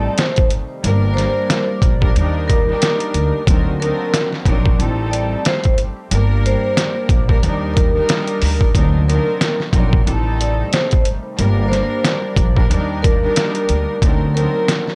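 This gritty, tough boom-bap hip-hop excerpt opens on a vibraphone melody, a bowed string section, a lush pad and an upright bass all sounding from the start, with the drums arriving at 0.2 seconds. At 91 BPM in 4/4 with a swung sixteenth feel, it sits in G harmonic minor, cycling through Am7b5, Gm, Ebmaj7 and D7b9b13. The sampler-style trip hop kit is compressed, pitched down and muffled, its thumpy kick, medium-tuned snare and hi-hat placed up front beside a woody, growly pizzicato upright bass. Above them, the metallic, ringing vibraphone carries the tune through an analog delay, while the reedy, gut-string period-style strings add light vibrato and a thick, detuned sawtooth pad with chorus stays very quiet underneath. The whole take has a dry, small-room character with cassette-tape grit from hardware recording.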